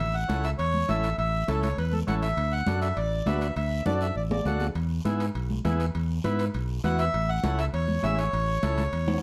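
Danceable and joyful, this cumbia excerpt moves at 202 BPM in A major, with a reedy, up-front accordion carrying the melody through plate reverb, pausing at 4.7 seconds and returning at 6.8, over a fingered electric bass up front, a buzzy overdriven combo organ with light vibrato, and background percussion of bright high-tuned congas, ringing metal-shell timbales and a raspy guiro, while a drum fill arrives at 3.9 seconds inside a dark production with moderate studio reverb.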